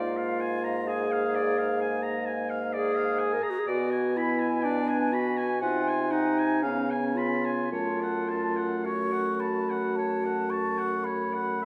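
A slow, elegiac movement for wind quintet opens with all five players sounding together from the start, moving in a rubato 4/4 at roughly 52-65 BPM and settling into F# minor from 3.7 s. The airy, hollow flute carries the melody high above, its vibrato and soft attack giving the line a solemn, breathing quality, while the clear oboe traces a second line just beneath it with a distant, roomy presence. In the middle, the dark French horn and the smooth-topped clarinet supply accompaniment, the clarinet sitting slightly forward of the others in the blend. The bassoon anchors the bass with a mellow, vintage tone and light vibrato. The harmony passes through tense diminished and dominant colors before resolving onto F# minor at 7.7 s, and a wet scoring-stage reverb with a two-second tail surrounds the ensemble in this brief passage cut from a longer piece.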